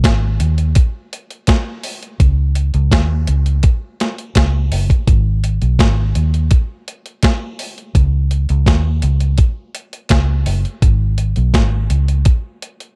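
A vintage muted electric bass and a crisp 8-bit drum machine start together, setting up a smooth, romantic lovers rock reggae groove in a straight four. The bass is dark and round, its foam-muted, amped tone sitting up front as it moves through a low register. The drum machine has an electronic, sampler-style character, with a thumpy kick, a medium-tuned snare and hi-hat, given a tape-warm edge and the feel of being re-recorded in a small room. The bass stops at 12.2 seconds, leaving the drums alone until the cut-off at 13.0 seconds, as this short piece is lifted from a longer work. The mix is dry and close, with little reverb, keeping both parts intimate and present.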